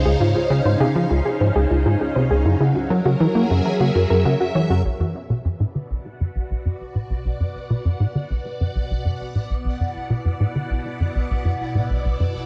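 A swirling, phased string machine holds sustained chords over a punchy, up-front sequencer bass riff from the opening of this cosmic, mysterious fragment of ambient, sequencer-driven space music at 100 BPM in straight 4/4, while a soft, round pluck plays gentle arpeggios until 4.8 s, after which the music settles into B minor as the strings fade in and the bass carries a filter sweep, the recording set in moderate plate reverb and worn, warbling cassette tape with pitch drift.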